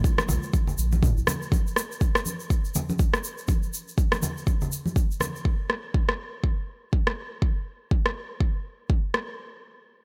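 Afro house excerpt at 122 BPM in 4/4 with a 16th-note swing, earthy and driving: a very quiet, smooth, detuned sawtooth pad with chorus holds a Bb7(no3) chord until 1.5 s above a round sine sub bass with sidechain pumping, while a deep, layered electronic kick runs to 9.0 s and an up-front deep house kit with rim click and toms runs to 9.3 s, alongside soft-handed, low-tuned congas with thick skins and a grainy, bright tube shaker, in a dry, small-room sound.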